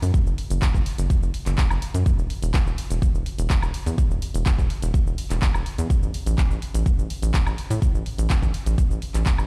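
Hopeful and uplifting, this short cut from a longer progressive house piece moves at 125 BPM in a straight 4/4 pulse. An electronic kick drum sits up front, deep and layered, carrying the beat from 0.1 seconds to 9.4 seconds. Beneath it, a tight sequencer bass drives the groove from E1 to A2, its sawtooth and square wave tones shaped into punchy filter plucks with a fast attack and a decaying tail, breathing with sidechain pumping. A deep house drum kit fills in the texture at a lower level with cabasa, handclaps, hi-hat and woodblock, its produced, layered sounds re-recorded in a small room like the kick. The overall sound carries the character of a big sound system in a bare room, with a large studio reverb framing the otherwise dry parts.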